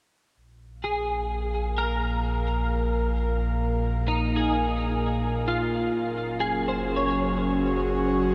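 Reflective and spacious, this ambient fragment from a longer piece drifts at 65 BPM in 3/4 in Bb minor: a round, deep sine sub bass enters at 0.4 seconds, a bright, clean twelve-string electric guitar joins at 0.8 seconds with compressed picked arpeggios shimmering through ensemble chorus and tape echo, and a soft, breathy pad fades in at 1.1 seconds with mellow, chorused sustained chords that move from Bb5 to Gbsus2, all set in a dreamy cassette-tape mix soaked in a huge reverb.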